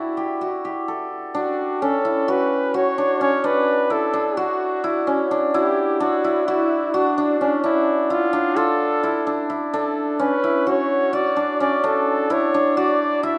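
A bright, shimmering hammered dulcimer sets out ringing arpeggios while a warm flugelhorn takes the solo melody with vibrato and pop-style scooped notes, both up front from the start of this restless yet hopeful contemporary instrumental in 9/8 at 258 BPM counted in eighths. After an opening A5 chord, the harmony settles into Bmadd9 from 1.3 seconds, moves to Dmadd9 at 7.6 seconds and returns to Bmadd9 at 9.7 seconds. A moderate scoring-stage reverb gives the pair a spacious setting, and the passage is cut from a longer piece.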